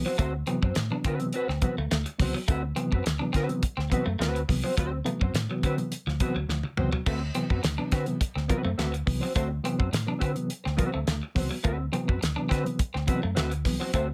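In a lightly reverberant, dry-drummed mix, this energetic, playful funk excerpt in D mixolydian at 105 BPM rides a D13 chord as a damped 70s kit with a fat snare and tight kick sits up front, a round, punchy, foam-muted fingered bass anchors the low end, a reedy electric piano throws stabs through fast tremolo, a dark fingered guitar with analog chorus accompanies, and a picked clean guitar plays a riff, with a drum fill at 6.5 seconds.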